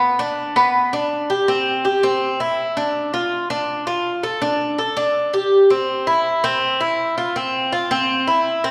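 A wet recital hall reverb surrounds this short excerpt of relaxed, sunny Latin music. A solo acoustic Cuban tres sits up front throughout its 8.7 seconds, its picked double strings giving a mellow yet metallic ring, with some strings doubled at the octave. The straight 4/4 feel stays easy within a compact middle range.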